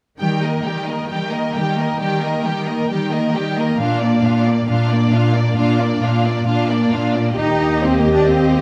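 In a straight 4/4 at 134 BPM, this short cut from a heroic adventure film score carries a swashbuckling, adventurous mood. A lush symphonic violin section sings the melody with vibrato, a soft attack and an expressive line. A chamber violin section plays an even, smooth second line beneath it, while the violas fill in the accompaniment and the up-front cellos carry the bass, all bowed with vibrato from 0.2 seconds. The harmony moves from Eb to Bb and back to Eb. At 7.4 seconds a mellow French horn section enters in the background with sustained chords, with light vibrato and a vintage, classical colour, and a woody double bass section joins on a low Eb until 8.6 seconds. A wet recital hall reverb gives the whole ensemble a spacious, warm glow.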